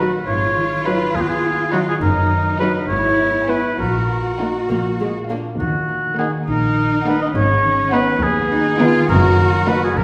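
Mischievous and magical, this short cinematic cue from a longer piece moves in a slow, straight 6/8 at 68 BPM in Eb minor, tuned slightly low to A4 = 436 Hz. An up-front oboe with a soft attack, light vibrato and a smooth top carries a second line over the full 10 seconds, while a very quiet violin section sings the melody high above with expressive vibrato. A second, distant violin section holds an even line lower down, and a close, lush viola section supplies bowed accompaniment. A concert harp rings out fingerpicked arpeggios across a broad span, and the bass is anchored by a focused, prominent cello section alongside a smooth double bass section. The harmony drifts through Abm7, Ebm/Gb, E/G#, Ebm/Bb and Bb to Ebm, then returns to Abm7 and Ebm/Gb, all heard from further back in a wet recital hall with a 1.5-second reverb tail.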